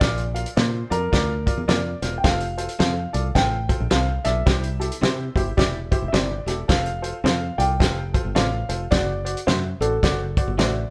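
The recording has the feel of a band playing live together in one room, with a moderate studio reverb around it. This is an upbeat, joyful 1960s-style soul groove with a swung, danceable pulse, cut from a longer piece. The acoustic drum kit sits up front with a fat snare, a tight kick and hi-hat, carrying a gritty vintage 12-bit sampler texture. A direct, foam-muted fingered electric bass also sits forward, while a brilliant, woody upright piano with short sustain plays the accompaniment over chords moving from Bb to F to C and back to F, landing on D7/F# at 8.9 seconds. A dark, mellow baby grand piano carries the melody in its upper register. From 0.6 seconds, a slightly broken-up electric guitar through a small old amp adds picked, compressed stabs with tremolo in the background.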